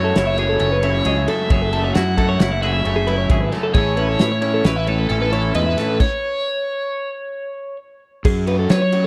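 Set in 5/4 at 133 BPM with a straight feel, this short cut from a longer math rock and midwest emo piece sounds intricate and playful. A biting, overdriven lead guitar carries the melody up front, while a fuzzed, punchy fingered bass sits forward beneath it and a loose indie drum kit with a fat snare, punchy kick and dark cymbals enters at 0.2 seconds. Two bright, twangy twelve-string electric guitars fill out the texture, one playing picked accompaniment through spring reverb and the other picking compressed arpeggios, while a double-tracked overdriven semi-hollow guitar plays a riff in the background. The harmony moves from F#m9 to Amaj9, then a stop from 6.0 to 8.3 seconds drops the accompanying twelve-string and the chords before the band lands on F#madd9. The dry, close 1970s-style studio sound keeps the parts clear and immediate.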